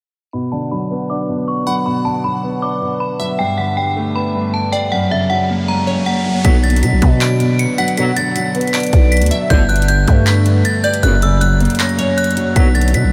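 A ringing, inharmonic FM bell melody and a dark, boxy concert grand piano open this melancholic trap excerpt at 0.3 s in B minor at 157 BPM in a half-time feel, joined soon by a faint, crystalline wavetable pluck with a filter sweep, before a background riser from 5.0 s leads into the section at 6.4 s, where a growling, buzzy 808-style bass sits up front beneath a trap kit of hard-clipped kick, metallic hi-hats and handclaps, and a very quiet, soft-attack brass ensemble adds stabs, all bathed in a dreamy mix soaked in huge ambient reverb over a Bm, Gadd9, F# progression.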